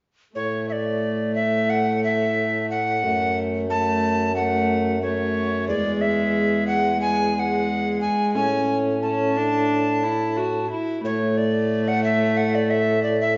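From 0.4 s, an airy, chiffy tenor recorder carries the melody up front over a reedy, gut-string viola and a mellow, close-miked bassoon bass in this festive, courtly renaissance-style consort dance at 90 BPM in A major, moving through F#m, E and A before settling on Asus4 at 11.0 s, with the whole cut from a longer piece set in a wet recital-hall reverb, heard from further back in the room with a dulled top end.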